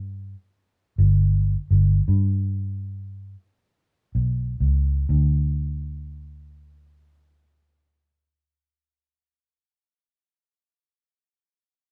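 A vintage muted electric bass, played with the fingers, carries this short folk fragment, its dark, foam-muted tone round and punchy and sitting up front between G1 and G2. The mood is nostalgic and heartfelt, in a straight 4/4 that slows down across the first 5.1 seconds before a second section begins. Light reverb gives the sound the feel of a band playing live in one room.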